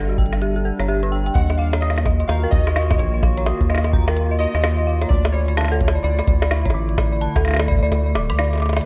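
Melancholic and eerie, this short IDM fragment moves in 4/4 with a swung sixteenth-note feel. A warbling, nostalgic pad holds sustained chords under chorus and its own reverb, pumping against the sidechain, while a rubbery, hollow square-wave bass sits up front with a bouncy, nasal pluck. A dark, detuned FM bell spins inharmonic arpeggios through chorus, tremolo and tape echo, and faint lo-fi synth keys enter at 1.3 seconds with a detuned, ring-modulated melody in the background. The drums pair a deep, tape-warm analog kick with a produced kit of woody snare, crisp hats and bongos re-recorded in a large room, closing on a fill at 8.6 seconds. The harmony moves from G5 to D#m7 and then Dmadd9, all in a dry, rough home-demo mix.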